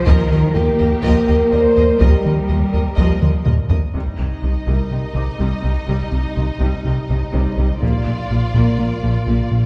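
Cinematic hybrid orchestral and electronic film score in C minor at 124 BPM, tense and vast, cut from a longer piece, where a distant, rich violin section carries a narrow melody over a lush second violin line, a close viola section, cellos and double basses in the background, dark, roomy French horn chords, a round analog bass riff, a felt-muted upright piano with audible action noise, and close, dry taiko drums that fill at 3.2 seconds, drop out at 4.9 seconds and return at 7.8 seconds, all moving through Ebadd9, Cm and Bb in a wet scoring-stage reverb heard from further back in the room.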